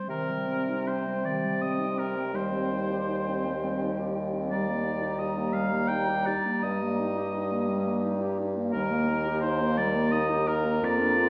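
A wet recital-hall reverb sets this lyrical, warm slow movement for wind quintet at a remove, as if heard from further back in the room. Cut from a longer piece, it moves in a rubato 3/4 at roughly 76-88 BPM in C minor, its harmony settling from C minor toward E-flat major. The airy concert flute carries the melody between G5 and B-flat 5 from 0.1 s, sounding distant and expressive behind the others, with vibrato and tongued notes. Up front, a clear oboe with light vibrato and a faintly vintage tone sings the second line from the very start, while the bassoon anchors the bass with equal presence. A mellow clarinet and a French horn with light vibrato fill out the accompaniment in the middle register, every voice shaped in a classical style through to 11.3 s.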